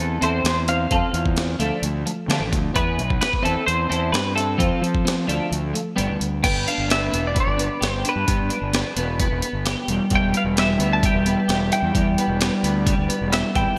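Bittersweet and cool, this indie rock passage moves at 130 BPM in a straight 4/4, with two clean, twangy twelve-string electric guitars: one carries the melody through lush chorus and delay while the other plays a riff with analog chorus. A fuzzy, overdriven fingered bass sits up front beside a gritty, pitched-up breakbeat sampler-style kit with a thumpy kick and gated reverb, whose kick and snare drop out briefly at 6.0 seconds before the second section begins. At 10.1 seconds a dark, distant woodwind section adds soft-attack sustained chords with vibrato in the background, framed by light reverb and bright 1980s-style digital production.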